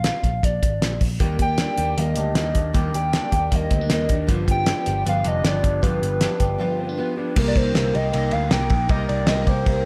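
Nostalgic and youthful, this short excerpt of jangly indie pop moves at a brisk 156 BPM in Eb major, with a warbling synth lead carrying the melody over a round, foam-muted picked bass and a cloth-damped drum kit whose fat snare and dark cymbals sit up front in gated reverb. At 1.2 seconds a shimmering, octave-doubled fingerpicked twelve-string acoustic guitar and a twangy, slightly broken-up electric guitar playing phased arpeggios join in, both bathed in plate reverb like the chorused lead. A brief break at 6.6 seconds leads into a new section on a Cm7 chord at 7.4 seconds.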